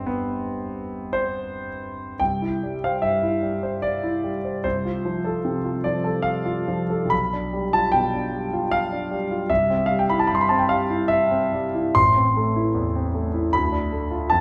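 Passionate and lyrical, this romantic classical character piece for solo concert grand piano moves at 74 BPM in a rubato, unevenly pulsed 3/4 in C major, the intimate, up-front instrument reaching deep bass down to G1 with audible action noise, set in a reverberant recital hall as its harmony passes from G through C, F/C and G7/B to A minor and D minor in this cut from a longer piece.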